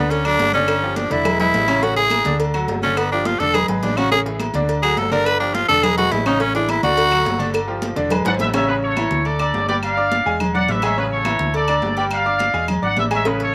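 A festive, danceable salsa at 210 BPM in A major opens with a raspy, gritty tenor saxophone soloing up front with vibrato over a brilliant baby grand piano, where the hammer action is audible, and a dark, round, amped hollow-body fingered electric bass, while background congas, low-tuned cowbell and bongos, woody claves, and ringing agogo bells and timbales with slapback echo drive the groove in a dry open-air sound; the saxophone stops at 7.5 seconds, and alongside a drum fill at 8.3 seconds a punchy, tight trumpet section with vibrato and slapback echo takes over the melody as this cut from a longer piece moves through D, G5, E and A major chords.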